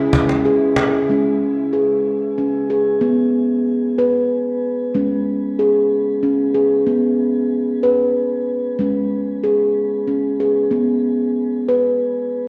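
World-meditative tuned percussion with a hypnotic, gentle mood, moving in an unhurried 6/8 and taken from a longer piece. An evolving wavetable pad opens with sustained, detuned chords, softened by chorus and shimmer reverb, but it stops at 1.1 seconds. A woody cajon with faint snares sounds briefly and distantly under those opening moments, struck with hard hands. From there the steel tongue drum carries the music alone, playing round, ringing arpeggios with soft rubber mallets. It sits up front, its pure tone trailed by a haze of shimmer. The whole recording carries a worn, warbling cassette quality with drifting pitch, set in a wet echo-chamber reverb and a small-room ambience.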